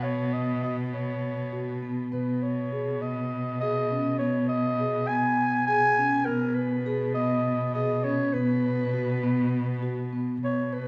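A growling clarinet, a vibraphone played with soft mallets and a dark, bowed cello all begin together in this playful, restless excerpt of contemporary chamber music in an uneven 7/8 metre. The raspy, jazz-style clarinet carries the melody with subtone and scooped notes, while the mellow, ringing vibraphone spins arpeggios with a fast motor vibrato, and the intimate cello holds a low B on the bass with a soft, sul tasto tone. A wet recital hall reverb surrounds the sound as the harmony moves from B to G#m/B and settles on B5 near the end.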